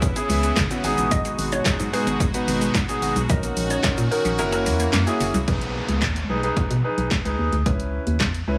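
A light small-room reverb surrounds this carefree, upbeat dance-pop excerpt in B major at 110 BPM. It is built on a punchy, tape-warm analog drum machine with kick, snare, handclaps, hi-hat and shaker, a hollow, organ-like FM bass and an up-front concert grand piano, while a bright, detuned sawtooth pad holds sustained chords, and the bass, piano and pad all pump to the sidechain. In the opening drop a squelchy pulse-wave blip pluck plays very quiet arpeggios and a grainy egg shaker sits close, and from 1.1 s a woody, round mallet-like synth pluck carries a mellow melody through chorus, phaser and digital delay; the kick falls silent at 4.4 s, the blip pluck stops at 5.4 s, and at 5.5 s the pad and egg shaker stop as a background downlifter sounds beneath the drums, bass and piano.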